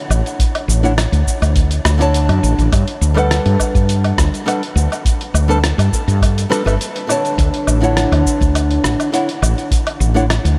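Sunset chillout at 103 BPM in D major, relaxed and sunny, moving from Dmaj7(no3) through Gmaj9 to Dmaj9 in this short excerpt from a longer piece. A round, hollow-bodied fretless electric bass sits up front beside a dark, fingerpicked nylon-string guitar with old strings and delay, while a gritty, overdriven sampler-style kit of cabasa, hi-hat, rim click and woodblock is joined by a deep, tape-warm electronic kick entering at 0.4 s. The whole mix is dreamy and soaked in a huge ambient reverb with an 8.5-second tail.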